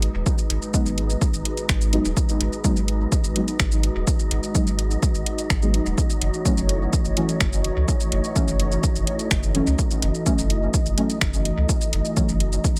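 A deep, full-bodied chord stab carries this hazy, meditative dub techno excerpt, entering at 0.7 seconds with a detuned, decaying tone colored by chorus, phaser, a filter sweep and dub echo, and ducked by sidechain pumping. Beneath it, a punchy, overdriven electronic kick arrives at 0.3 seconds and drives a straight 4/4 pulse at 126 BPM. A deep house kit of finger snaps, metallic hi-hats and shaker adds its own overdrive and dub echo, while a soft, round sub bass sits low and breathes with sidechain pumping. A moody analog pad holds slow-attack sustained chords with chorus, and an airy, breathy noise texture drifts quietly in its own built-in reverb. In G# phrygian, the harmony moves from G#m7 to F#m7 at 6.0 seconds, and the mix itself stays dry and close, with little added room sound.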